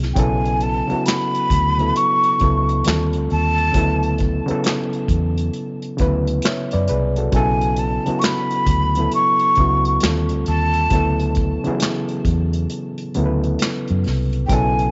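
A slow, swung sixteenth-note groove from an acoustic drum kit played with bundle sticks (punchy kick, snare, hi-hat and handclaps) and a dark, foam-muted fingered electric bass carries this soulful, late-night neo-soul R&B passage, where a gritty, overdriven reed electric piano through a combo amp moves between Bm9, D#maj9 and Dmaj9 beneath a breathy, hollow jazz flute melody with vibrato, all set in light small-room reverb.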